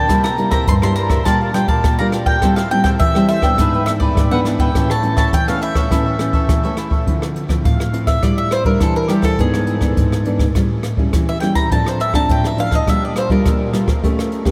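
A dreamy haze of huge ambient reverb soaks this short cut from a longer samba and choro piece in D minor, moving at a lively, yearning 103 BPM in straight 4/4. Up front, a woody, double-strung mandolin carries the picked melody through a tape echo, then takes a solo from 7.1 seconds as the harmony shifts from Dm9 through A7sus4 and E7/G# toward Gm7/Bb. Beneath it, a dark, classical nylon-string guitar is fingerpicked close to the listener for the whole passage, while a crisp, picked cavaquinho adds accompaniment only until 7.1 seconds. A jazz brush drum kit in a small room keeps hi-hat, rim click and a boomy kick near the front, giving the airy wash a grounded pulse.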